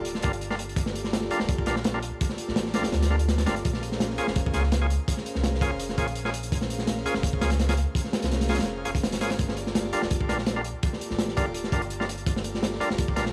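A crunchy breakbeat drum kit sits up front in this raw, dark jungle excerpt, its tight kick, medium-tuned snare and hi-hat sounding saturated and rolled-off on top, while a round, deep dub sub bass holds the low end at 167 BPM in G minor. An overdriven tonewheel organ adds thick, percussive stabs with key click and vibrato, roughened by vintage 12-bit sampler grit and dub echo, as an airy, breathy pad with chorus sustains chords from 0.8 seconds. The harmony moves from Gm7 to Bbm7 at 3.6 seconds and back at 9.4 seconds, all captured as a dry, gritty hardware recording with small room ambience.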